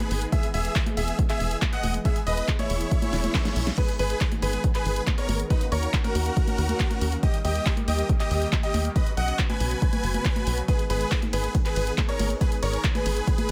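A straight 4/4 pulse at 139 BPM drives this soaring uplifting trance excerpt in G# minor: a punchy, tape-tinged electronic kick and a big-room dance kit with a huge snare, congas, handclaps, hi-hat, ride and crash push a tight, dark sawtooth sequencer bass with tube saturation, while a huge, euphoric detuned supersaw lead carries the melody with tape echo over a brilliant grand piano second line with delay and mellow filtered supersaw chord swells, the lead, piano, swells and bass all pumping to the sidechain, and a drum fill with a background reverse cymbal at 3.3 seconds carries the harmony from E into G#m.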